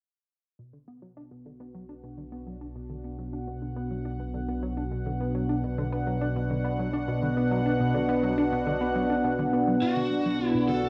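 Ambient, sequencer-driven space music in B minor at 104 BPM, this cosmic, mysterious cut from a longer piece fades in at 0.6 seconds with a bright, resonant, ring-modulated pad holding sustained chords over a tight, detuned sawtooth synth riff with a plucky filter, both steeped in chorus and cassette tape haze, before the synth's filter sweeps as an overdriven electric lead guitar enters with a short picked melody at 9.8 seconds amid plate reverb and delay.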